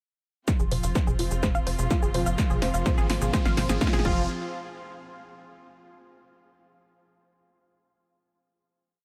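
This short melodic techno piece opens at 0.5 seconds straight into a build-up. An overdriven, up-front kick pounds four on the floor, while a programmed drum kit rolls through a fill of punchy snare, shaker, open hat, low toms and crash, its percussion pumping against the kick. Underneath, a tight sawtooth sequencer bass rolls in sixteenth notes with a moving notch and its own pumping feel. A bright, detuned unison pluck spins a sixteen-step arpeggio through delay as a filter sweeps across it. Behind them, an intimate studio string section holds bowed sul tasto chords with vibrato and a soft attack, sitting in the background and pumping too. A background riser joins at 1.8 seconds, soon followed by fat, brassy analog synth stabs in sparse, echoing power chords colored by chorus and delay, before the hypnotic, melancholic build lands on a final hit at 4.3 seconds over light digital ambience.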